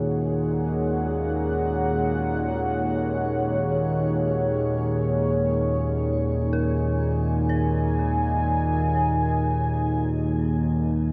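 A low analog drone in Eb minor anchors this cavernous, ominous dark ambient fragment, its sawtooth and pulse-wave tones warbling and evolving with a vintage, mellow character up front, thickened by chorus. A deep, moody analog pad sits alongside it from the start, holding sustained chords built from detuned sawtooth and triangle waves with a sub octave, its slow attack and long release bathed in chorus and shimmer reverb. Far in the background, an eerie detuned synth bell traces FM arpeggios with an inharmonic, decaying quality, drifting through chorus, diffuse ambient delay and shimmer reverb as it fades out over the full 11.1 seconds. The music floats in free time on a single Ebm chord, tuned to A4 = 442 Hz. A huge, wet reverb with a 7.5-second tail soaks the mix in a dreamy haze, and the passage is cut from a longer piece.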